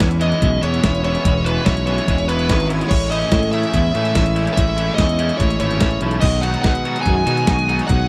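A dry, close 1970s-style studio sound frames this wistful, carefree indie rock excerpt at 144 BPM in 4/4, moving through E6, Amaj7 and B6. Up front, a thumpy, tape-warm 8-bit drum machine drives alongside a growly fuzz bass, while a dark, biting overdriven lead guitar carries the melody from 0.2 seconds, joined by a sparkling glockenspiel second line with tape echo. A compressed clean guitar riff sits in the background, and a bright overdriven guitar riff with chorus and tape echo plays over a very quiet, lush sawtooth string machine holding sustained chords.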